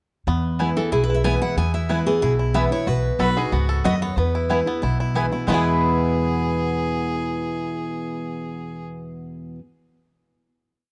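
At 0.3 s a full-bodied dreadnought guitar plays alternating bass and strum with bass runs, joined by a twangy banjo's three-finger rolls and a growly upright bass playing two-beat root and fifth with walk-ups, and from 0.6 s a woody mandolin chops the off-beats; at 0.8 s a second picked guitar carries the fiddle tune in running eighth notes, finger squeak and all, and at 3.2 s a clear fiddle adds answering phrases in the melody's rests, making a rustic, driving bluegrass piece in E major at 184 BPM that sounds dry and close in a small 1970s-style studio room before it closes on a final chord.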